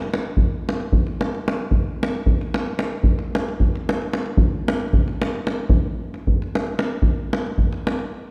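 Balkan folk in a restless, virtuosic 5/8 at 226 BPM in eighths, where a deep, acoustic davul sits up front in a live room from 0.0 to 8.1 seconds, carried by a moderate scoring-stage reverb in this short cut from a longer piece.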